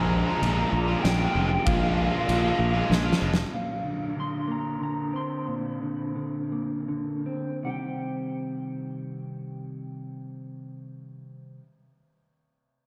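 Post-rock in C minor and 3/4 at 76-97 BPM, this brooding, cinematic passage opens with a dark, lo-fi guitar melody through a small old amp over a double-tracked, overdriven semi-hollow riff and a growly fuzz bass, joined at 0.4 s by an oversized, low-tuned kit of punchy kick, fat snare and dark ride, whose fill at 2.9 s gives way at 3.5 s to clean, compressed arpeggios on a mellow guitar with analog chorus as the tempo slows and Bb7 moves through Bbadd9 to Cm, all steeped in a dreamy plate reverb.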